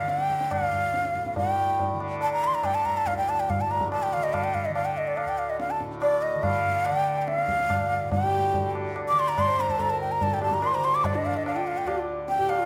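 A breathy, close-miked bamboo bansuri sings a solemn, longing Hindustani melody over a shimmering, buzzing tanpura drone and distant, low-tuned ringing tabla, the pace gradually speeding up in a moderate recital-hall reverb until a dark, intimate sarangi with gliding portamento and sympathetic-string resonance joins as a second line at 8.2 seconds in this fragment of a longer piece.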